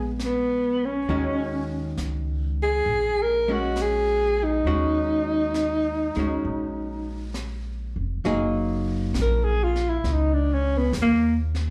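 A breathy alto saxophone with vibrato, subtone and a soft attack sings the melody up front from the opening of this intimate, melancholic jazz ballad at 67 BPM in swung 4/4, over dark, clean, picked archtop guitar accompaniment and a woody pizzicato upright bass, with a brushed kit and its high-tuned snare joining at 0.2 s, sax, guitar and drums carrying slapback echo, as the key moves from Eb minor to F# major and the sax takes a solo at 8.2 s, the guitar falling away at 9.6 s, the whole band heard through a club PA with light reverb in a cut from a longer piece.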